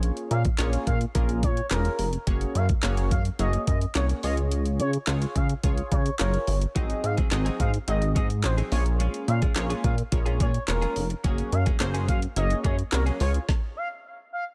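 A polished, produced sound sits in a digital ambience, with a tape-toned drum kit and a glossy bass up front. This driving, energetic dance-pop excerpt moves at 107 BPM in a straight 4/4 in Bb minor, cycling through Bbm7, Gbadd9, Db and Ab7. The smooth R&B kit brings a knocking kick, woody snare, warm hats and handclaps, while the chorused synth bass blends nasal pulse-wave and sawtooth tones with a plucky filter, pumping against the kick alongside a punchy, warbling polysynth comp with filter sweeps. From 0.3 seconds an expressive sawtooth lead glides between notes with portamento, vibrato, a moving notch and dub echo, keeping a mellow tone. A clean, direct-recorded electric guitar enters at 6.8 seconds with a picked, compressed riff coloured by analog chorus, and after the band stops at 13.5 seconds the lead rings on briefly.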